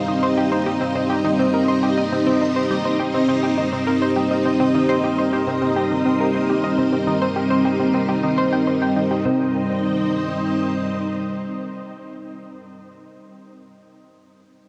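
A straight 4/4 pulse carries this ambient, sequencer-driven space music, an expansive and cosmic passage cut from a longer piece and resting on a single minor chord. Up front, a lush, vintage string machine holds full-bodied sustained chords with ensemble chorus and a moving notch, and it sounds alone once the other parts stop by 9.5 seconds, lasting until 12.3 seconds. A round analog pluck with a sub octave and filter sweep plays a riff through chorus and tape echo. In the background, a ringing, metallic vibraphone played with medium mallets and its motor off traces arpeggios in a boxy small room, with its own tape echo. Further back, a bubbling stepped-filter texture of detuned, resonant sawtooth tones fades in slowly and sustains with a long release and built-in reverb. The recording sits in a huge, wet reverb with an 8.4-second decay and carries the worn, warbling pitch drift of old cassette tape.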